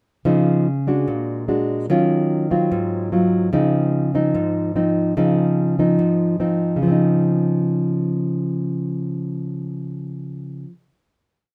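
Bossa nova for solo nylon-string guitar, breezy and sunny, with a full-bodied, thumb-plucked classical tone sitting up front in a small room as thumb bass and syncopated plucked chords move through Dbmaj9, Bbaug7, Ebm9 and Ab6 before settling on a final chord held from 6.8 to 10.1 seconds.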